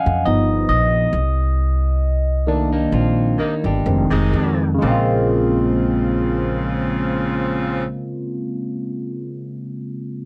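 A barky tine electric piano leads this short cut from a longer R&B and neo-soul piece, up front with light overdrive and phaser as it takes a solo over a slowing tempo in the first 4.8 seconds, moving through G7alt, Cm7 and Fm7 toward Bbm9 in Bb minor at around 61-70 BPM with a gentle sixteenth-note swing. A woody, growly pizzicato upright bass sits close beside it, while a slightly broken-up electric guitar through a small old amp adds a brief lo-fi second line and a clear, tight horn section with light vibrato and octave doubling punches in with stabs from 3.4 seconds. The mood is introspective and sultry, captured in a dry, close 1970s-style studio sound with little reverb.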